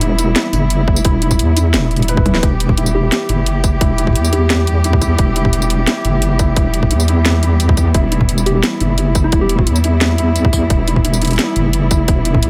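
A deep, dark wobble bass built from square and sine tones with chorus anchors this cinematic, spacious half-time drum and bass in E minor at 174 BPM, joined by an overdriven, up-front kit of cracking snare, bright hats, tambourine and toms and a tight electronic kick from 0.9 seconds, while a lush bowed cello section holds smooth vibrato chords under sidechain pumping, a felt-muted upright piano with audible action noise plays mellow arpeggios through tape echo, and a round, warbling FM synth lead with chorus and dub echo floats in the background from 2.9 and again from 8.5 seconds.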